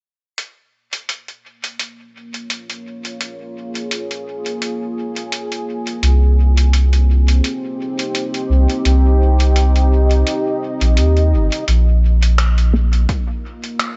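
A lo-fi, sampler-style kit of finger snaps and hi-hat sets a lightly swung 85 BPM groove in 4/4 from 0.4 seconds, its muffled, pitched-down sound roughened by overdrive and trailed by dub echo. This excerpt of an ambient dub piece in Bb dorian feels spacious and deep, moving from Bbm7 to Cm and back. A moody, detuned sawtooth pad fades in beneath the beat, its sustained chords softened by chorus, built-in reverb and a long, mellow release. At 6.0 seconds a round, soft sub bass arrives up front, pairing triangle and square waves in sustained low notes. Near the end, a resonant, wave-folded chord stab flickers through a phaser at 12.7 seconds, followed by a punchy, overdriven electronic kick. The mix sits in light digital ambience with a dark, rolled-off top end.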